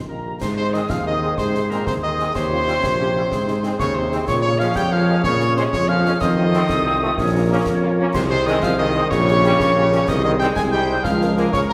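An up-front, smooth-topped tuba anchors this rousing, festive military-style wind band march in 6/8, beneath a solo cornet carrying a warm, classical-style melody, while a euphonium and a clear woodwind section weave second lines in the background and a pure, expressive piccolo adds tongued, vibrato-laden lines up high. A very quiet, distant French horn section fills out the accompaniment and a soft-attacked trombone section holds tight sustained chords. Concert snare drum, concert bass drum and dark clash cymbals enter at 0.4 seconds, close and dry against the wet reverb of a recital hall, in a passage cut from a longer piece.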